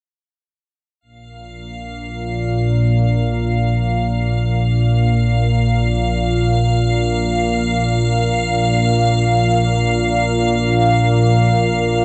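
Dark ambient drone in free time, desolate and cavernous, heard here as a short cut from a longer piece. An organ-like drone sits up front from 1.6 seconds, its calm, detuned sine tones spread by ensemble chorus and its own reverb, sustaining low between Bb1 and Bb2. Behind it, a dark analog pad fades in across the span from 1.0 to 12.0 seconds, holding deep, moody, full-bodied chords built from detuned sawtooth and triangle waves with a sub octave and chorus. An icy glass pad also rests up front, a crystalline, airy tone on F5 with a noise layer, chorus and shimmer reverb. Everything sits in a huge, wet ambient reverb with a very long tail, and the high end is rolled off, keeping the space murky and enveloping.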